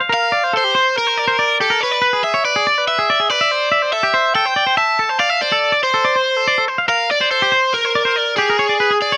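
A clean, twangy electric guitar opens the excerpt with picked arpeggios, joined almost at once by a bright, overdriven electric guitar carrying the melody, both compressed and up front. This restless, intricate rock passage moves at 142 BPM in a straight 4/4, passing through changes such as Gm7, E7/G# and Am7. A small room's moderate reverb surrounds the two guitars until the cut at 9.2 seconds.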